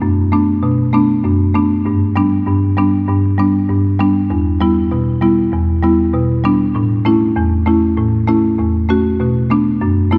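A moderate plate reverb and an echo-heavy mix surround a lone buzzing marimba, struck with medium mallets and sitting up front with a woody, hardwood-bar warmth fed through analog delay. This short dancehall cut from a longer piece feels tough and sultry, its swung sixteenth-note feel carrying the marimba from 0.0 to 10.2 seconds across a low-to-middle range. The harmony moves from Bm7 through G, Em and A before returning to Bm7 at 9.2 seconds.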